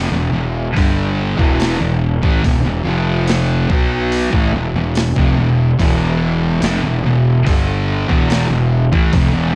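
Stoner and doom metal in a brooding, heavy mood, this short passage cut from a longer piece moves in a straight four. Two thick fuzz guitars both play the riff from the very start, picked and distorted and sitting up front, one with a warm tone and the other darker. A fuzz-drenched electric bass, played with the fingers, runs beneath them from 0.0 seconds with a growly, punchy overdriven tone and tube saturation. A boom-bap, sampler-style drum kit enters at 0.8 seconds, gritty and compressed, with a thumpy kick, a medium-tuned snare and hi-hat carrying a tape-like character. The harmony leans on E minor, shifts briefly to an F power chord at 2.9 seconds, and then returns, all set in a dark production with light digital reverb.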